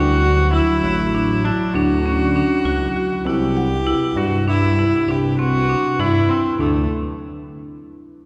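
Moving in a straight, uneven 11/8 at 198 eighth-note beats per minute, this restless, playful piece of contemporary chamber music in D major shifts from Dadd9 to Cmaj7 at 3.3 seconds and returns to Dadd9 at 6.6 seconds. A bright, woody marimba struck with hard mallets spins arpeggios, while a single clear, earthy viola carries a second line up front beside a fat, saturated analog bass. Behind them, a warbling, lo-fi pad with chorus and its own reverb holds mellow sustained chords, and a wet concert hall places the ensemble further back in the room in this passage cut from a longer work.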